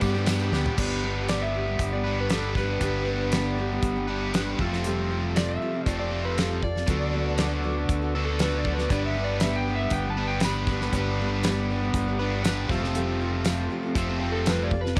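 Warm and nostalgic, this folk rock and heartland rock excerpt opens with a drum fill at 0.5 seconds before a slightly broken-up electric slide guitar takes a solo with slapback echo from 0.8 seconds, riding over a bright, double-tracked overdriven guitar riff, a full-bodied dreadnought acoustic guitar with finger squeak in the background, a round, deep dub fingered bass, a damped 70s drum kit with a fat snare and dark cymbals, a soft flute-like tonewheel organ through a slow rotary speaker, and a very quiet jingly tambourine that returns at 9.4 seconds, all in a small room.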